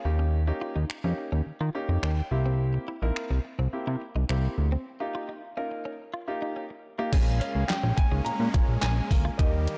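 A straight 4/4 groove at 106 BPM, driven by a thumpy, detuned 8-bit drum machine with claps, finger snaps, hi-hat and crash, anchors this bittersweet yet confident dance-pop passage in Bb dorian, where a fat, saturated analog bass and a grand piano pump under sidechain while a clean, direct-recorded electric guitar riff with analog chorus sits in the background, and after a break from 4.9 seconds, huge, lush supersaw chords arrive at 7.1 seconds and an intimate baby grand melody with digital delay enters at 7.4 seconds, all within a dark production with light reverb.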